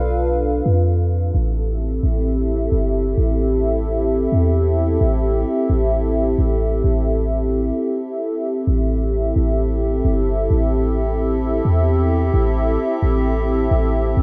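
A hollow, flute-like pad with chorus and a slow attack sustains dark chords over a deep, boomy 808-style sine bass from the opening of this melancholic, spacious cloud-rap excerpt in A minor at 131 BPM, felt in half-time, moving from Bm7b5 to Am7 at 1.3 seconds and pausing for a break between 7.8 and 8.7 seconds, set in light reverb with a rough home-demo mix.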